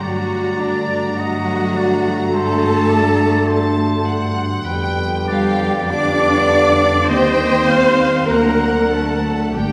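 A slow, rubato pulse in 4/4, drifting between 44 and 53 BPM, carries this solemn, elegiac passage from a romantic symphonic slow movement, cut from a longer piece. The violin section sings the melody with focused, lush vibrato, while a second violin line sits in the background with a soft attack. A clear, slightly vintage-sounding oboe and a pure, straight-toned concert flute weave secondary lines around it. The violas supply a rich, expressive accompaniment and are the most prominent of the strings. Dark, distant French horns and clear, present trombones hold sustained chords, while the double basses and the smooth, even cellos anchor the bass. The harmony moves from D/G through G7/F and Cm/Eb to a D7 at 8.3 seconds, all bathed in a generous, wet concert hall reverb.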